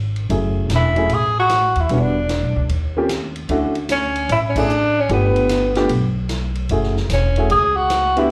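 A pizzicato upright bass opens this brief, swinging slice of late-night small-group jazz, its growly, woody tone sitting up front with steel-string bite. A swung big-band drum kit joins almost at once from a distance, with dark ride and crash cymbals, hi-hat, a medium-tuned snare and a boomy kick. Soon after, a natural-sounding upright piano fills in the chords with a slapback echo, moving through F#m7, Em9, D#13, Dmaj9 and G9 before settling on F#m9. The tenor saxophone carries the melody from 0.8 seconds, a warm, vibrato-rich jazz voice that also carries a slapback echo and leads the mix. The whole band hits an accent together at 4.5 seconds, and the sound has the feel of a live club gig heard through the venue's PA, with a touch of club reverb and small-room ambience before the passage breaks off mid-piece.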